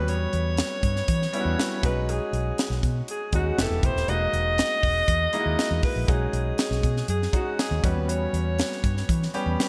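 A bright, glossy 1980s-style digital production with light reverb and studio ambience frames this breezy, polished jazz-funk pop excerpt at 120 BPM in a straight 4/4, moving through rich chords such as Em6, B6 and Fmaj9#11. Up front, a breathy alto saxophone carries the jazz-style solo melody with soft attacks, scooped notes, light vibrato and a smooth top, touched by delay, while a clear baby grand piano accompanies intimately with audible action noise, long sustain and a subtle chorus. Also up front, a dark, round, foam-muted fingered electric bass sits punchy and amped, and a tight, dry funk drum kit with a high-tuned snare, a tight kick, airy hi-hat and gated reverb enters at 0.1 seconds.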